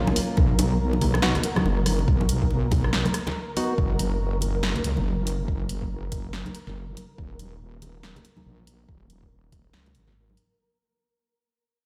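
Heard through a big sound system in a bare stone room, this cavernous, meditative fragment of deep dubstep moves at 141 BPM in a swung half-time feel, fading out across its full length over chords of B, Gb and Eb5. A heavy, saturated wobble bass with a detuned sawtooth edge sits up front alongside a deep layered electronic kick, while a deep house kit adds a punchy snare, hi-hat and rim click, and ringing, close congas carry a dub echo. A hollow, ring-modulated organ stab with chorus and dub echo sounds only until 3.7 seconds, and a flickering, grainy texture holds a single Bb4 throughout in its own reverb.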